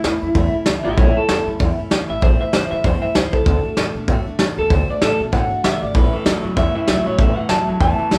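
A twangy, slightly broken-up electric guitar through a small old amp takes a clean, lo-fi solo across this retro, rollicking rockabilly excerpt with a swung feel. Up-front brushed drums with a rolled-off top and a tight kick, woody, thumpy pizzicato upright bass, and a full-bodied picked acoustic guitar with finger squeak tucked in the background carry it. A second bright, picked electric guitar joins with a low riff at 6.0 seconds, all under light reverb that suggests a band playing live in one room.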